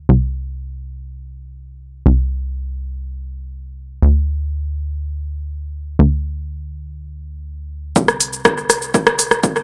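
A straight 4/4 pulse at 122 BPM drives this dark, melancholic melodic techno excerpt, cut from a longer piece. A plucky analog bass opens alone from 0.0 seconds, its sawtooth and square-wave tone snapping with a fast attack and decaying filter pluck, sitting up front between C2 and D2 with sidechain pumping and a high-pass filter shaping its funky bounce. At 8.0 seconds a build-up begins as an electronic kick drum and a techno drum kit arrive together, both layered, produced and placed up front with a tape-warm character from being re-recorded in a small room. The kick is punchy and high-passed, while the kit brings smooth hi-hat, rim click and shaker through an analog delay. Light reverb and an echo-heavy mix give the short passage a shadowy sense of space.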